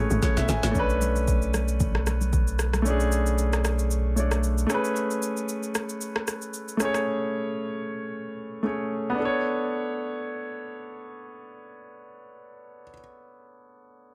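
Soulful and late-night, this amapiano excerpt moves at 114 BPM in B dorian with a light swing, its intimate concert grand piano carrying the harmony from start to finish between Amaj9 and Bm9 chords, its action noise audible and its long sustain polished. A punchy, tight log drum opens the bass before a thick, deep triangle sub takes over from 0.8 to 4.7 seconds, while an overdriven electronic kit with a deep kick, woody snare, rim click and shaker enters with a brief fill and plays until 7.1 seconds. Damped, soft-handed congas sit in the background early on, and a digital ambience surrounds the mix.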